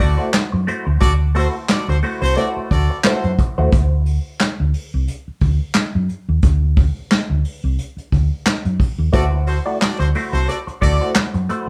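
A round, hollow-body fingered electric bass sits up front with a brushed vintage kit of punchy kick, smooth snare, hi-hat and handclaps in this gritty, strutting 89 BPM funk cut in D mixolydian over a D9 chord, swung on the 16ths, while a tight, clear horn section with light vibrato and a dark, compressed clean electric guitar with wah and spring reverb play at the opening and return at 9.1 seconds, the band captured live in one lightly reverberant room.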